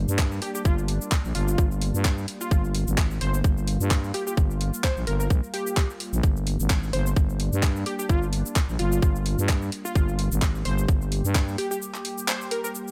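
Bass house at 129 BPM in G Phrygian, aggressive and swaggering, with a 55% swing on the sixteenths and a single G minor chord underpinning this short cut from a longer piece. A tight, overdriven electronic kick sits up front beside a growling, thick FM bass that pumps against the sidechain, while an overdriven garage kit of cabasa, handclaps and hi-hat fills out the groove and a bright, detuned sawtooth pad with chorus holds sustained chords in the background. A punchy, catchy unison lead carries the melody through analog chorus, cassette tape colour and dub echo, and the kick and bass drop out by 11.6 s, ahead of a break from 11.8 s, all set in a digital ambience with a faint mains hum.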